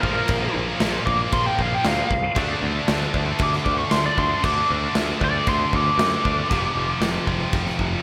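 Driving at 116 BPM in a straight 4/4, this heavy hard rock excerpt sets a biting, overdriven lead guitar solo with slapback echo, ranging between Bb4 and D6 until 7.2 s, over a wall of three picked riff guitars (one scooped and one double-tracked, both sitting in the background), a growly, punchy picked bass, and an up-front big rock kit with a tight kick and bright crashes, all framed by a lush hall reverb for a big arena sound.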